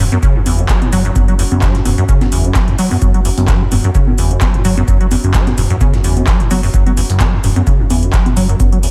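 A squelchy, resonant acid bass riff sits up front in this raw, driving acid house cut, its square-wave line sweeping through the filter with a fast, decaying attack, softened by subtle chorus and trailed by analog delay, ranging from F#1 to F#3. At 129 BPM in 4/4 with a light 16th-note swing, a booming analog drum machine enters at 0.1 seconds, its congas, handclaps, toms and metallic hats carrying an overdriven grit, followed at 0.2 seconds by an overdriven electronic kick with a deep, small-room thump. Further back, a gritty, pitched-up breakbeat kit adds high-tuned snare, shaker and hi-hat, thinned by high-pass filtering and compressed with a tape-like sheen. Underneath, a round sawtooth-and-sine bass with ring modulation holds a deep, sustained, evolving foundation, pumping against the kick alongside the acid line. A warbling, nostalgic lo-fi pad fades in across the whole excerpt, its dark, chorused tones and built-in reverb breathing with sidechain pumping, all wrapped in a digital ambience.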